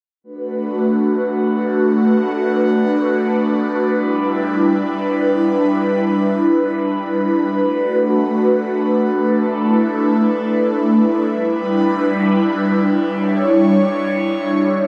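Wet studio reverb surrounds a lone breathy synth pad, up front and detuned with a noise layer, slow attack and long release, and treated with chorus, phaser and digital delay, as it sustains a melancholic, spacious hip hop passage in free time and B minor, moving between Bm7 and Em7 from 0.2 to 14.9 seconds in this fragment of a longer piece.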